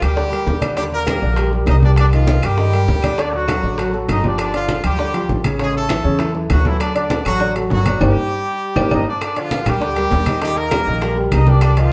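Fiery and driving, this salsa passage in G minor charges ahead at 199 BPM in a straight 4/4, cut from a longer piece. A brilliant, punchy horn section carries the melody with tight pop-style precision, while a warm grand piano fills out the accompaniment alongside it. Up front, the pizzicato upright bass has a woody, thumpy gut-string tone that anchors the harmony as it moves from Gm through Ebmaj7, Cm7 and D before circling back. The percussion is layered: ringing metal-shell timbales, tight high-tuned bongos set back in a larger space, compressed and saturated low-tuned congas with a thin, damped skin, and very quiet woody claves placed close. A band accent hits at 8.0 seconds, capped by a drum fill from 8.8 to 9.2 seconds that launches the return of the opening material. The whole group sounds as if playing live together in one room, bathed in a wet studio reverb.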